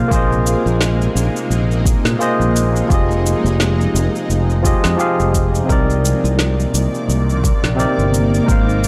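Sunset chillout in C minor at 86 BPM with a 16th-note swing, this warm, smooth excerpt moves through Bb9sus4, Fm7 and Cm9 chords over a dry, gritty digital ambience. A barky, lightly overdriven tine electric piano with tape echo sits up front beside a direct, amped fingered electric bass, while a shimmering, ethereal pad with a slow attack, octave-up shimmer, chorus and phaser holds sustained chords beneath. A deep, layered electronic kick with overdrive and studio reverb anchors the groove, joined by a tape-tinged electronic shaker and woody snare.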